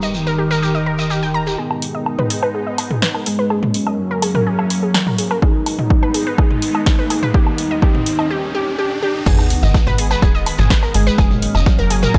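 A light reverb gives this hypnotic, dramatic melodic techno excerpt a polished, spacious sheen, with sidechain pumping breathing through the lead, pad, pluck, bass and most of the drum machine. A soft octave-layered synth lead carries the round, mellow melody with chorus and dub echo, over a sweeping resonant pad of bright, evolving sustained chords and a lush, detuned unison pluck spinning arpeggios through tape echo. In the opening moments a tight, nasal sequencer bass, a very quiet overtone-sweeping drone and a grainy, distant shekere sit beneath the synths, then drop away as a punchy analog drum machine enters at 1.7 seconds with low-pass filtered hats, snare, toms, woodblock and crash. A build-up follows, with filter sweeps on the lead and arpeggio, an up-front electronic kick arriving at 5.4 seconds, and a background riser and sub drop before a short break. At 9.3 seconds the drop lands with an impact, bringing back the bass and shekere alongside a gritty, tape-toned sampler-style kit of hi-hat and snare, and the drone soon rejoins.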